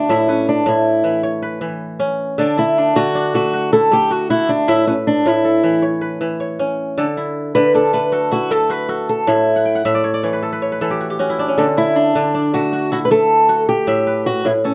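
Picked steel-string acoustic guitar and kora sound together from the first moment of this flowing, warm excerpt from a longer piece in the West African traditional style, set in 12/8 at 104 BPM counted in dotted quarters with a straight feel in D major. The guitar carries the melody in a compact range from C#4 to B4, its parlour-sized body giving a warm, boxy tone with the sound of fresh strings, placed up front. The kora spreads arpeggios from A2 to G5 around it, mellow yet crisp and ringing, also close in the mix and touched by a slapback echo. The harmony rocks between A and D every few seconds before settling on A5 at 13.9 seconds, and the kora adds a fill from 9.6 to 11.6 seconds. A moderate studio reverb gives the pair a modest sense of room through to the end at 14.7 seconds.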